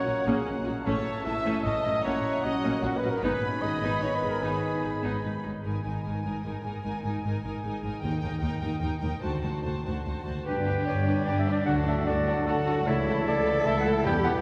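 This excerpt from a longer cinematic cue opens with most of the orchestra together: a warm, lush violin section carries the melody with expressive vibrato, while a second violin line, rich violas and a close chamber cello section with portamento sit in the background over woody double basses. In 3/4 with a swashbuckling, adventurous spirit, a bright, present oboe, a dark and distant clarinet and a hollow, pure flute weave second lines. A very quiet harp rings out arpeggios throughout, and a mellow trumpet adds stabs as very quiet clear trombones and dark, roomy French horns hold sustained chords. The winds and brass drop out at around 5.4 seconds, the trumpet a moment earlier, leaving strings and harp. They return at 10.5 seconds as the harmony moves through G, D and A/C# major chords. Hard-mallet timpani strike articulately at 8.0 seconds and again near the close. A long, wet cathedral reverb surrounds the ensemble with the spaciousness of a church or concert hall.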